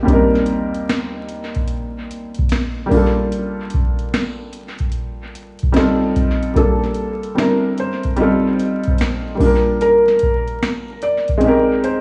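Vinyl crackle and small-room ambience color this echo-heavy, reflective and melancholic lo-fi hip hop excerpt in G minor at 74 BPM with a swung 4/4 feel, where a clear, woody upright piano with cassette-tape character plays accompaniment from the start over a booming analog drum machine of deep kick, crisp snare, metallic hats and finger snaps treated with dub echo, while a soft, felt-muted upright piano joins to carry the melody from 6.6 seconds, likewise steeped in dub echo, as the chords move from Cm7/Eb through Gm9 and F9 to close on Abmaj7.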